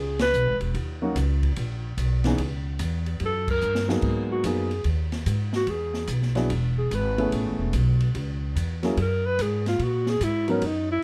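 A swung 4/4 pulse at 146 BPM drives this short, late-night slice of small-group jazz, cut from a longer piece and settling into G# minor from 4.0 seconds. Pizzicato upright bass sounds woody and up front throughout, while an open acoustic drum kit in a small room adds dark cymbals, hi-hat, ride, a medium-tuned snare and a punchy kick, sitting lower in the balance. A dark, vintage grand piano with short sustain comps from 1.0 seconds, and band accents land at 0.1 and 3.4 seconds before a drum fill leads into the second section. The mellow alto saxophone, soft in attack and smooth on top with plate reverb, carries the melody and then takes a solo from 4.0 seconds over chords moving from G#m7 through E and Amaj9 to F#. The production is dark and lightly reverberant, giving the whole a cool, late-night mood.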